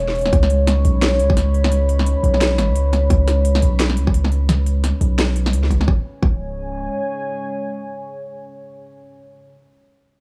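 A half-time drum and bass groove with a swung sixteenth feel drives this cinematic, heavy excerpt, as a tight, up-front electronic kick and a tape-warm kit of cracking snare and crisp hats play alongside a deep, mellow 808-style sine bass with tube saturation, while a dark, moody sawtooth-and-triangle analog pad holds sustained chords through chorus, phaser and sidechain pumping until 9.4 seconds, all set in a dry, gritty digital ambience.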